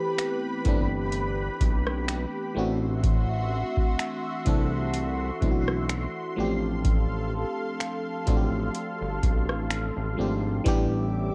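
A slow 63 BPM groove in 4/4 with a light 16th-note swing sets this moody, sensual contemporary R&B excerpt in motion, cut from a longer piece. The booming analog drum machine arrives at 0.2 seconds, sitting up front with a deep kick, metallic hi-hats, finger snaps and rim clicks, all given a tape-softened edge. A fat, detuned sawtooth bass joins at 0.7 seconds with a fast attack and a filter sweep, holding thick, sustained low notes. From the start, an FM electric piano carries the accompaniment with a glassy, bell-like attack and decaying tones touched by chorus, while a lush unison pad holds slow-blooming chords above it through chorus and phaser. The harmony moves from Am9 to D9/A, then G9sus4/A, settling on Em7 near the close, and the whole track has the hazy character of a home recording on cassette, with digital ambience around it.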